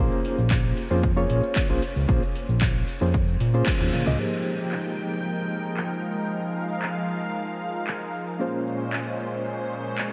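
A straight 4/4 nu-disco groove at 114 BPM in F minor carries this cosmic, sensual excerpt, where a reedy, lightly overdriven electric piano with tremolo and a fat, sawtooth analog bass pump together over punchy overdriven kick and a house kit with metallic hats, until a drum fill at 3.7 seconds ushers in a lush, airy unison pad with chorus and phaser, all bathed in a dreamy cathedral reverb as the chords move from Bbm9 to Fm11 and back.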